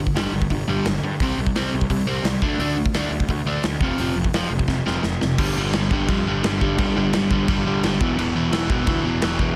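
Punk rock at 172 BPM in a straight 4/4, rebellious and energetic, this brief cut from a longer piece sits in G mixolydian. An overdriven electric guitar, bright, double-tracked and compressed, drives a riff up front through power chords on G, C, D and F, and later on G and E. Beneath it, a fuzz picked electric bass adds a growly, overdriven low end that runs the whole 9.6 seconds. A big acoustic rock drum kit with a dark, smooth character sits up front as well, pairing a punchy kick and medium-tuned snare with hi-hat and crash cymbal. A drum fill from 4.7 to 5.4 seconds sets up the second section, and the dense, heavily limited modern master carries light reverb.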